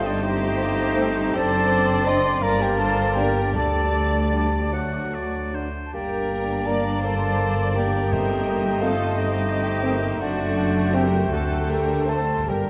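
A vinyl crackle and a wet concert hall reverb surround this melancholic, yearning excerpt from a slow romantic orchestral movement in 6/8, where muted violins carry a veiled, lush melody with vibrato, joined by an airy distant flute, a clear oboe, a smooth clarinet, quieter muted second violins, a mellow bassoon and background violas over dark cellos and double basses, while a very quiet horn section holds distant chords from 0.9 s and soft timpani strokes sound at the start and again at 8.1 s as the harmony moves through Gm and D in a rubato sway.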